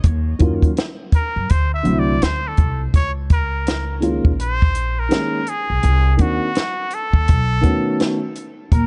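A swung sixteenth-note jazz-hop groove in 4/4 rides on a compact cocktail drum kit with a punchy kick, high-tuned snare and hi-hat, sitting up front beside a woody, thumpy pizzicato upright bass in this smooth, cool fragment of a longer piece. A dark, mellow grand piano with audible action noise comps intimately from 0.4 seconds, and a nasal, breathy straight-muted trumpet carries the melody from 1.2 seconds with light vibrato over chords such as Ebm7, D9 and Cm7b5. A metallic, ringing vibraphone struck with hard mallets appears only at 8.7 seconds, all within a dry, dark and warm production that keeps its top end soft.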